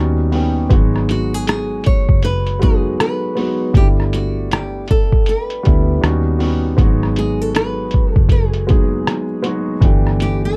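Swung sixteenths in 4/4 drive this mellow, nostalgic lo-fi hip hop fragment: a compressed, pitched-down sampler-style drum kit of thumpy kick, hi-hat and rim click sits up front from 0.3 seconds beside a round, foam-muted fingered electric bass and a soft felt-muted upright piano with audible action noise, cassette tape colouring and plate reverb, while a bright, fingerpicked nylon-string guitar enters at 1.1 seconds with a plate-reverbed melody over altered dominant and minor seventh chords in a dark, lightly reverberant mix.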